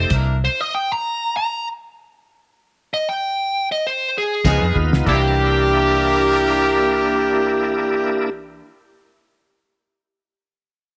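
A biting, overdriven lead guitar opens this gritty, laid-back soul blues, joined for an instant by the band on a C9 hit before carrying on through a stop until the band returns at 4.4 seconds on a Db9. Round, foam-muted bass sits up front beside a shouting, lightly driven tonewheel organ with key click, chorus vibrato and a slow rotary speaker, while a cloth-damped, thuddy drum kit with a fat snare and dark cymbals plays a short fill. Distant horns hold punchy sustained chords and a twangy small-amp guitar adds stabs in the background as a warm, scooping harmonica with tongue slaps enters at 5.1 seconds, all in a small room with light reverb, cut from a longer piece.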